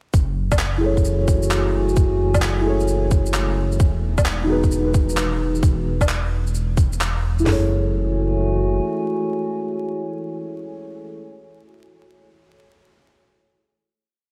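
Future garage with a rainy, wistful mood, where a garage drum kit with a tight kick, cracking snare and crisp hats drives a muffled two-step beat up front beside a skittering shuffled layer of electronic shaker, woodblock and handclaps, a dark detuned saw bass rumbles on sustained roots, muted felt-like synth keys scatter sparse echoing chord stabs through a filter sweep, and a warbly tape-like pad holds slowly shifting nostalgic chords until the groove gives way at 7.5 s to a final chord, over a bed of vinyl crackle in light reverb.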